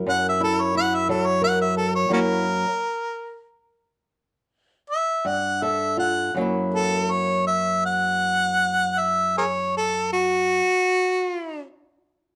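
A slow 12/8 pulse of about 53-60 BPM begins slowing at 0.8 seconds and halts from 2.1 to 5.2 seconds in this gritty, soulful acoustic country blues in F# mixolydian, cut from a longer piece. A woody, boxy fingerpicked ladder-braced guitar with old strings sits up front as accompaniment over F#7 and a brief Gsus2. An up-front, warm harmonica carries the solo melody with light vibrato, tongue slaps, scooped notes and a smooth, jazz-tinged top, all in a dark production with moderate studio reverb.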